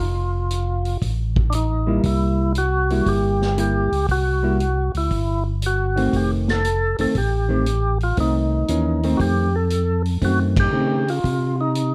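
A greasy, soulful soul jazz organ trio excerpt at 118 BPM in swung 4/4 opens with a fat tonewheel organ carrying the melody through slow rotary speaker and chorus vibrato, its key click and second-harmonic percussion up front over a second organ voice playing the bass, joined at 0.5 seconds by a gritty vintage drum kit with dark cymbals and a punchy kick, and at 1.9 seconds by a dark, fingered hollow-body jazz guitar comping over F7, C7 and a closing F#dim7, with a band accent at 10.5 seconds in a dark, lightly reverberant mix.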